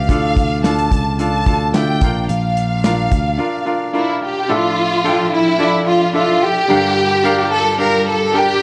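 A lush, expressive bowed violin section carries the melody over a bright, brilliant grand piano in this dramatic, earnest piano-driven pop passage at 109 BPM, with a round, picked electric bass and a smooth, tight-kicked acoustic drum kit with handclaps dropping out by 3.4 s, before a distant string section with vibrato and portamento enters at 4.5 s on sustained chords in D minor, set within a dark, warm production with moderate reverb.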